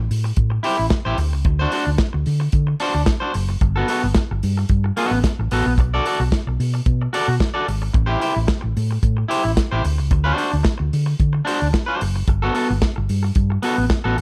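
Driving and danceable, this disco excerpt moves at 111 BPM in a straight 4/4, cycling through Am7, D7, Gmaj9 and Bm7 across its 14.2 seconds. A dry, dark soul drum kit with a tight kick, medium-tuned snare, hi-hat and a rolled-off top sits up front beside a round, amped hollow-body short-scale bass, fingered and dark in tone. Over them, a picked, twangy electric guitar at the edge of break-up adds warm, slightly gritty accompaniment, all set in a light studio reverb.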